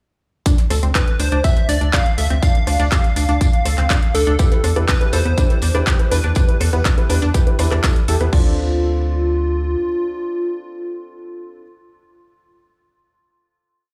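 Heard through a big sound system in a bare room with a large studio reverb, this driving, emotional progressive house piece at 122 BPM in D dorian opens its drop at 0.5 seconds with a punchy, overdriven electronic kick at the front, a layered big-room dance kit of claps, hats, rim clicks and crash, a dark, brushed acoustic breakbeat kit with a rolled-off top tucked in the background, and a detuned, chorused synth arpeggio running a 12-step loop that drifts against the bar through dub echo. A galloping, saturated sawtooth sequencer bass that pumps with the sidechain slips in at 0.7 seconds, and a catchy, bright unison square-wave lead motif doubled very quietly by a soft, round, wave-folded pluck follows at 1.0 seconds, before a boxy grand piano joins at 4.4 seconds with pulsing gated chords and everything resolves onto a final Dm7 chord at 8.3 seconds.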